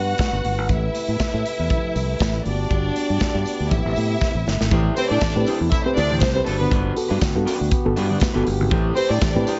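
A straight 4/4 disco groove at 120 BPM drives this glamorous, driving excerpt in A dorian, built on an up-front studio drum kit with a punchy kick, a medium-tuned snare and hi-hat, and a bright, growly fingered electric bass. Very quiet high-tuned congas with a thick-skinned tone and a jingly tambourine add a faint percussive shimmer beneath the beat. A lush, bowed string section with vibrato carries a second line up front, while a tight French horn section holds sustained chords with a classical poise. The harmony moves between Gmaj7 and A minor colours, from Am and Am9 to Am7. After a drum fill at 4.2 s, the congas drop out at 4.6 s, and at 4.7 s a dark, slightly broken-up electric guitar and a reedy, mellow electric piano with fast tremolo join as accompaniment. Light studio reverb surrounds the mix, and its top end is rolled off above 7.8 kHz.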